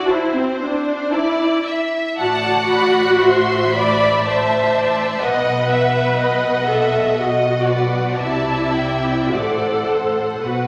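Violas and two violin sections open the passage together, the violas close and up front with a focused, warm tone while one violin section carries the melody with a smooth, even sheen and the other spins a higher second line with a lush, smooth top. This is a slow romantic movement for string orchestra in 3/4, moving at roughly 51-64 BPM with a rubato feel, and its mood is yearning and solemn. At 2.2 seconds the cellos and double basses enter together on the bass, the cellos rich and the basses woody, sitting further in the background. The harmony starts on A minor and passes through darkened diminished colour before reaching B and C, all bowed with vibrato across the sections. A wet scoring-stage reverb gives the ensemble a spacious bloom, and a vinyl crackle lends an old, worn patina to this short fragment of a longer piece.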